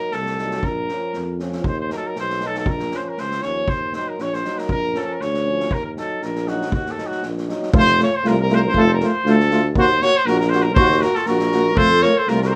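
A lightly swung 2/4 groove from an acoustic street-band kit, with a boomy kick, a medium-tuned snare and a rolled-off top, drives this bittersweet, restless Balkan brass band passage, where a clear, roomy trumpet with light vibrato carries the melody up front while a bright trombone and a euphonium sit in the background, a present, warm tuba holds the bass, and a classical-style clarinet joins as a second line at 10.8 s, all in a moderate studio reverb.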